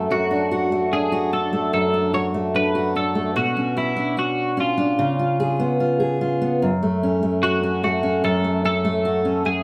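A clean, twangy twelve-string electric guitar carries the melody, its compressed, picked lines bathed in lush chorus and plate reverb, in this tender, wistful pop fragment at 74 BPM in F# minor. Beneath it, a fingerpicked steel-string acoustic guitar with bright, fresh strings and an auditorium-sized body plays the accompaniment up front, moving through D/F#, Bmadd9 and C#7 before settling on F#m as a new section begins at 6.6 seconds. Both guitars play throughout, in a wet studio ambience heard from further back in the room.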